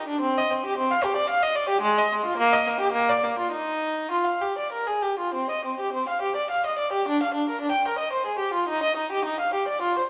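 In a triple metre with free, rubato pacing, this flowing yet grave fragment of a baroque-style suite movement for unaccompanied violin shifts key at 5.3 s. A single player, close and up front, bows with an airy, nasal, reedy gut-string tone in period style. The violin rings into a wet stone room, with vinyl crackle beneath it.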